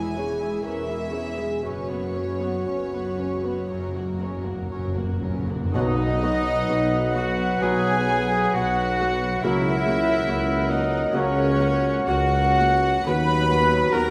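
A moderate concert-hall reverb surrounds this tender, lyrical slow romantic movement for symphony orchestra in B major, cut from a longer piece and moving with rubato at about 56-72 BPM in 4/4. Two soft-attack, sul tasto violin sections carry the floating melody and a second line over lush, woody violas, mellow French horn chords, ringing fingerpicked harp arpeggios and a pure cello and double bass foundation, with timpani entering at 3.7 s for a fill. At 5.7 s the winds and brass join on a B major chord, with the clarinet and tuba following a moment later: a very quiet cor anglais, a pure flute ensemble, a distant clarinet, a dark bassoon, roomy trombone chords, vintage-toned trumpet stabs and a tuba bass in the background.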